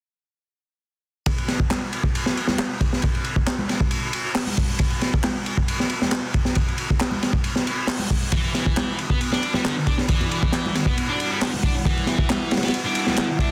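Funky and gritty, this breakbeat excerpt rides a crunchy, up-front acoustic drum kit with a punchy kick, high-tuned snare and dark cymbals, layered with tape-warm electronic handclaps and bright congas in the background, before a thick, double-tracked fuzz guitar riff with delay arrives at 8.3 seconds and a deep, moody pad with chorus and sidechain pumping settles in beneath on an Em9 chord at 9.8 seconds.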